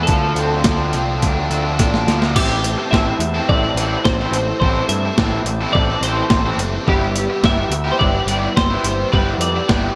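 Moody and cool, this indie rock passage in A minor moves at 106 BPM in a straight 4/4, cut from a longer piece and dressed in bright 1980s-style digital production with a lush hall reverb. A clean, twangy twelve-string electric guitar carries the melody under analog chorus, while an overdriven, compressed electric guitar with ensemble chorus and a raw, bright garage guitar soaked in overdrive, lush chorus and digital delay both play riffs. A growling, overdriven picked bass anchors the low end, and an up-front, sampler-style breakbeat kit, gritty and tape-warm with a thumpy kick and medium-tuned snare, rides on gated reverb. After a drum fill from 1.8 to 2.4 seconds, a very quiet, smooth tonewheel organ enters at 2.4 seconds with sustained chords through a slow rotary speaker. The harmony moves from Dm7 to Am7 at that point and settles on Em/G at 6.9 seconds.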